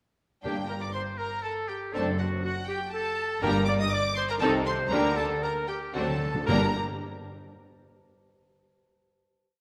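In a quick 3/4 at 120 BPM, played with rubato, this complete classical-period movement for symphony orchestra sits in G minor and feels urgent and restless. A lush violin section carries the melody with vibrato and portamento. Oboe and clarinet double the tune at the octave, the oboe clear and smooth on top. A second violin section and a very quiet viola section supply short accented chords and sustained chords, joined in the background by a mellow French horn section. Cellos mark the bass on the beats and hold sustained notes, with the double basses doubling the line evenly beneath them. Close, dry timpani with calf heads and medium mallets add single strokes on bass notes and rolls, and a fill from 5.9 to 6.5 s leads into the final G minor chord, which rings in a wet concert hall reverb.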